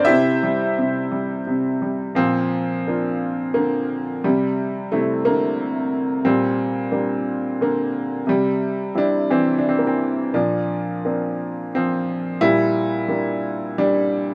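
A clear, woody upright piano, worn and slightly detuned and sitting up front in light reverb, plays alone from the start of this sunny, lyrical classical solo passage cut from a longer piece, moving in a rubato 3/4 around 88 BPM in Bb lydian across a range from G2 to E5 and opening on C before a new section begins at 2.2 s that drifts between C, Bb, Gm/Bb and Bbadd9 until it ends at 14.3 s.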